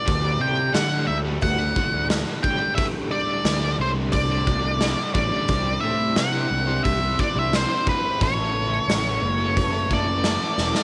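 Hypnotic and trippy, this short psychedelic rock excerpt sets an up-front, dark, distorted octave-fuzz lead guitar melody with tape echo over a round, punchy fuzz bass, a compressed, double-tracked overdriven guitar riff with tremolo in the background, a very quiet detuned analog pad with chorus, and a saturated garage drum kit in a pumping stone room, moving from Dsus4 through Cadd9 to Aadd9 before a drum fill at 10.6 seconds.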